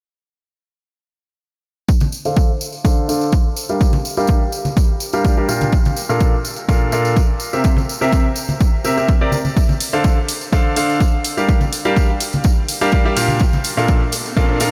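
A brilliant, up-front grand piano carries the riff in this soulful, bittersweet piano house excerpt, its long sustain pumping against the sidechain while a low-pass filter sweeps across it and delay trails behind, moving through Dm7, Gm7, Bbmaj7 and C7. Beneath it, a dry, punchy overdriven kick drives a straight beat alongside softly played, saturated tambourine and congas, with a gritty filtered electronic hi-hat joining at 9.8 s. A background riser creeps in at 13.7 s inside light reverb before the clip cuts off.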